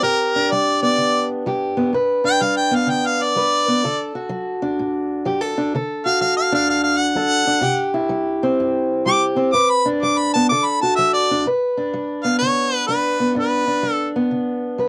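A bright, close-miked harmonica takes a jazz-tinged solo with light vibrato, soft attacks and scooped notes until 11.5 seconds, while a boxy fingerpicked acoustic archtop guitar accompanies it up front in this laid-back, swaggering swung country blues, caught on home cassette tape with moderate booth ambience, with the harmonica dropping out at 14.1 seconds and the guitar carrying on to 14.9 seconds.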